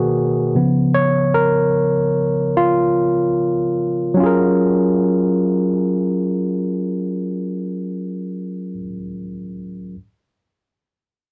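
Warm and relaxed, this brief R&B passage, cut from a longer piece, settles into an easy 4/4 groove with a gentle sixteenth-note swing. A lone tine electric piano carries everything, bright and barky with a touch of overdrive from its combo amp, sitting up front in the mix. It plays alone for the full 10 seconds, moving through Bmaj7 and C#6 before arriving on F#maj9 at 4.2 seconds, where a second section begins. The piano ranges from B2 up to C#5, giving the lush chords both body and sparkle. A light reverb hangs around the part, while the recording itself feels dry and close, like a 1970s studio session.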